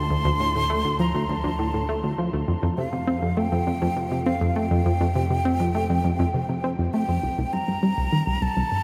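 Opening together, a tight, driving sequenced sawtooth synth riff with chorus and tape echo, a fat, saturated analog bass and a breathy silver concert flute melody with unsteady vibrato and tape echo carry this expansive, cosmic fragment of ambient space music at 101 BPM in 4/4 over D5 and Fsus2 chords, the bass dropping away at 7.2 s as the harmony moves to C5, all within a vast, echoing space.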